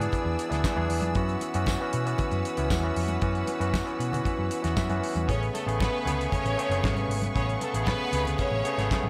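Sultry and glamorous, this disco excerpt moves at 116 BPM in a straight 4/4, built over chords of E7 and F#7sus4 before settling on Amaj9 at 5.3 seconds. A barky, clean tine electric piano sits up front through a combo amp, while a dark, round hollow-body short-scale bass, picked and amped, gives a punchy low end. A damped 70s drum kit with a fat snare, tight kick, rolled-off top, hi-hat and handclaps keeps a dry groove, joined by very quiet congas with a thick-skinned, soft-handed tone and a jingly tambourine in the background until 4.9 seconds. Above it all, a close, biting studio string section holds lush, vibrato-rich chords high in the register. The electric piano plays a fill leading into the second section at 5.3 seconds, where a distant, intense violin section enters with a second line coloured by tape echo, and the whole mix sits in light, small-room reverb.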